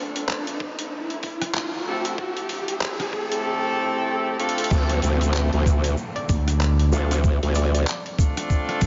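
Glitch hop at 95 BPM in D minor with a swung, gritty and funky feel: an electronic riser builds over pitched-down, sampler-style boom bap drums with crash, handclaps, hi-hat and rim click, a thumpy up-front kick and distant, roomy jazz horn stabs pumping through a diffuse delay, until a drum fill leads into the drop at 4.7 seconds, bringing in a growling, wobbling bass and a grainy tube shaker, joined shortly after by a dark woody wave-folded pluck and a punchy slap bass with an envelope filter, all bathed in a huge, dreamy reverb on Am7 moving to Dm7.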